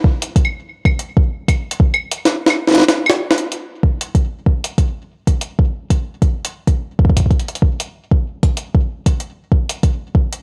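A compressed, pitched-up jungle sampler-style kit of claves, hi-hat and a medium-tuned snare sits up front in this eerie, intricate IDM fragment at 95 BPM in 4/4, its tape-warm grit carrying studio reverb and analog delay over a lightly swung 16th-note feel. Alongside it, a soft electronic kick, re-recorded in a small room and also up front with studio reverb, drops out from 2.3 to 3.5 seconds while a drum fill leads into the second section. The recording has a dry, digital ambience and a rough hardware character.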